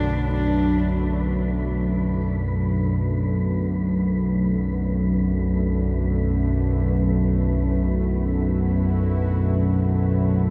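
Dark ambient drone, cavernous in mood, in which a husky, boxy horsehead fiddle bows a brief vibrato-laden line with portamento through shimmer reverb and tape echo in the first second only, above an up-front, nasal analog drone of sawtooth and pulse waves with pulse-width modulation, a bright, detuned sawtooth pad with a filter swell that moves from Bm to Dadd9/B at 5.0 seconds, and a faint, breathy wind-like noise texture with shimmer reverb, the whole mix set in a huge, wet reverb.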